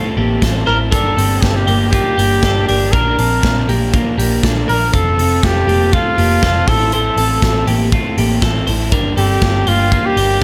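Lightly reverberant, this excerpt of jangly indie pop moves at 120 BPM in a straight 4/4 with a nostalgic, breezy mood, tuned slightly below standard pitch at A4 = 439 Hz. A bright, twangy twelve-string electric guitar plays clean, compressed, picked arpeggios from the opening, while a crunchy overdriven guitar adds picked accompaniment in the background. A dark, round, foam-muted electric bass enters at 0.2 seconds with a vintage amped tone, and a big acoustic rock kit follows at 0.4 seconds, its tight kick, medium-tuned snare and hi-hat sitting up front in a big room. From 0.7 seconds a warm, punchy trumpet carries the solo melody with vibrato and a pop style, up front in the mix yet with a distant, roomy character. The harmony moves through Am, Gm, Bb and F before returning to Am and Gm.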